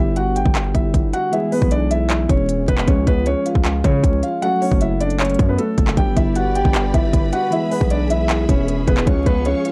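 A concert grand piano with tape echo carries the melody up front in this brooding, hard-hitting half-time trap piece at 155 BPM, backed by warbling, detuned lo-fi synth keys with chorus, a heavy, aggressive distorted 808 bass, an electronic kit of hard-clipped kick, crisp hi-hats and handclaps, and lush bowed strings with vibrato that enter at 6.0 seconds, set in a dark production with vinyl crackle as the chords move through G, E, C# and F#m.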